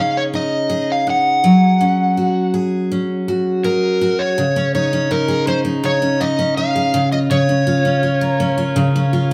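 A dark, overdriven slide guitar carries the melody over a bright, full-bodied picked steel-string acoustic guitar with audible finger squeak in this sunny, carefree pop excerpt at a relaxed 82 BPM in Db major, moving from Dbsus2 through Gbsus2 to Bbm/Db in a wet studio reverb.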